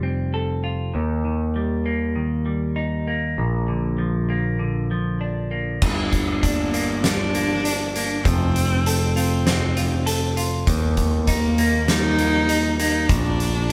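Post-rock in G minor at 99 BPM, melancholic and cinematic, cut from a longer piece, where a clean, up-front semi-hollow electric guitar plays arpeggios over a growly overdriven picked bass from the start, an oversized low-tuned drum kit with a punchy kick, fat snare and dark cymbals in a pumping stone room arrives at 5.8 seconds, and a focused, close bowed cello with vibrato carries the melody from 6.5 seconds, all in a moderate studio reverb as a band playing live in one room.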